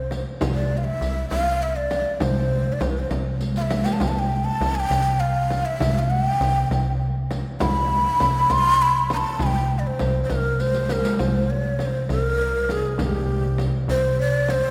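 A breathy, up-front ney carries the melody over a punchy sawtooth analog bass pluck, a deep, dry frame drum and a distant riq with bright jingles in this stately, passionate Persian modal ensemble piece at 67 BPM in 6/8, cut from a longer work and set in a lush concert-hall reverb, shifting from C mahur to C shur at 11.2 s, where a dark, veiled bowed double bass drone enters in the background.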